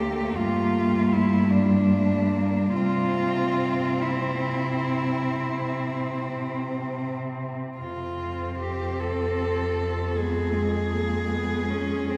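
This classical excerpt for cello ensemble is serene and lyrical, unfolding in 12/8 with a rubato feel. Four bowed cellos, each a single player, sound together from 0.0 to 12.2 seconds. The melody sits up front in a warm, close, intimate voice played sul tasto, with light vibrato, a soft attack and an airy bow. The bass cello is just as prominent, with an expressive tone shaped by vibrato and portamento, yet it sounds distant. In the middle, a second line with the same gliding vibrato stays in the background, while an accompaniment part shares the melody's hushed, bow-over-fingerboard character. The harmony moves from Gm7 through C and F to an Fdim, all set in a wet cathedral reverb with a long tail that places the listener further back in the room.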